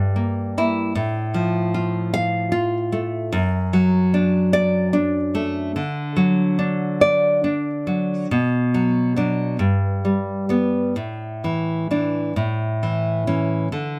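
A lone nylon-string guitar opens on a shadowy Gm6 chord before easing onto F/A, then brightens as it settles onto D/F# at 3.3 seconds. This short fragment of a longer romantic piece for solo classical guitar feels sunny and tender, moving in a gently rocking 6/8 at a slow, rubato pace that lets phrases breathe and stretch. The fingerpicked playing ranges from deep bass notes up into the high treble, with a harmonic path that drifts through Bm and G before coming to rest on Asus4 and finally A at 12.4 seconds. The guitar sits up front with a warm, intimate tone, captured by close, detailed microphones that reveal every nuance of the strings. A light touch of reverb adds a soft sense of space around the instrument.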